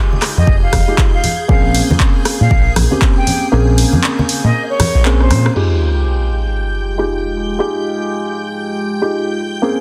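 A felt-muted upright piano plays mellow, pumping stabs over shimmering string-machine violins in this moody, hypnotic deep house excerpt, joined almost at once by soft-handed congas, a tape-warm analog drum machine with filtered hats and handclaps, an airy distant flute melody with delay, a smooth gliding synth bass and an up-front electronic kick, which drops out at 3.5 seconds before a drum fill and a sub drop at 5.6 seconds give way to a deep, dark ambient pad alongside the lingering piano and strings.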